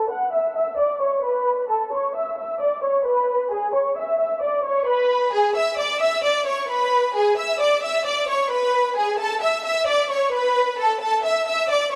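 A dark, lightly reverberant small-room sound frames this hard-hitting hip hop excerpt at 132 BPM in a half-time feel, where a lush, expressive violin section plays alone up front with rich vibrato, a low-pass filter sweeping across its tone for the first 5.6 seconds as the harmony moves from F#m to C#m and then A.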